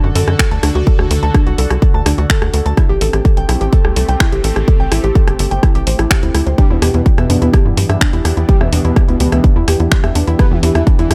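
A tape-warm analog drum machine of finger snaps, hi-hat and rim click enters at 0.2 seconds in this hypnotic, dramatic melodic techno excerpt at 126 BPM in E minor, with sidechain pumping on the hats. It is joined at 0.4 seconds by a punchy, up-front electronic kick, beneath a tight, nasal sequencer bass that also pumps. A woody, wave-folded pluck spins dark arpeggios through chorus and tape echo over a bright, full-bodied resonant pad holding slow-attack chords in the background, moving from D to Am7 and then to Em7. At 6.6 seconds a smooth, expressive portamento lead enters with vibrato, chorus and delay, shadowed by a very quiet, detuned supersaw second line, all set in a digital ambience.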